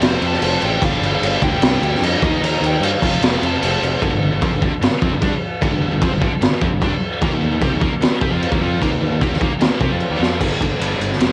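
A home cassette recording with light reverb gives this heavy, driving hard rock cut its raw character. At 150 BPM in a straight 4/4 feel in G minor, a garage drum kit sits up front with a high-tuned snare, boomy kick and gritty, saturated tone across crash, ride, kick and snare, adding a fill at 10.2 seconds. A growly, punchy fingered bass with fuzz and overdrive drives underneath. Three bright, picked distorted guitars carry the riff: a scooped high-gain one with distortion sits in the background, while a tight one and a double-tracked, high-gain heavy one stay very quiet. A dark, smooth lead guitar with overdrive and a cassette tape effect plays the melody only until 3.8 seconds. The chords move through F, Gm, Eb and F, then shift to G5 at 4.0 seconds and Eb5 at 7.2 seconds before landing back on Gm.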